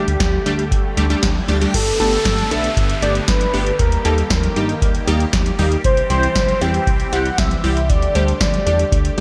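Synth-pop at 117 BPM in a straight 4/4, this wistful, nostalgic excerpt from a longer piece moves through Dsus4, Gadd9, Eb and C before returning to Dsus4. A velvety, smooth sawtooth lead with vibrato carries the melody through chorus, tape echo and shimmer reverb, over a punchy, funky detuned polysynth comp with a filter sweep, a swirling, phased analog pad set in the background, and a glossy, dark chorused synth bass built on pulse-width modulation. An up-front electro analog drum machine with a deep kick, punchy snare, metallic hats and crash carries gated reverb, while a riser and downlifter sit in the background from 0.8 to 5.8 seconds.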